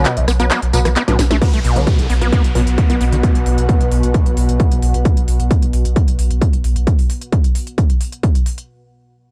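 A straight, driving 4/4 pulse at 132 BPM anchors this relentless, dark fragment of peak-time techno, where a squelchy, gritty acid bass riff and bright, aggressive rave stabs, both pumping with dub echo, open over a round sine sub bass on B and a techno kit of cracking snare, smooth hats, handclaps, rim click and tambourine, before a short drum fill at 1.1 seconds gives way to a heavy, up-front kick and an electronic downlifter at 1.4 seconds, a filter sweep on the stabs, and a warbling vintage analog drone and ethereal, phased pad that both fade in at 2.2 seconds to fill out the dark, tape-tinged mix.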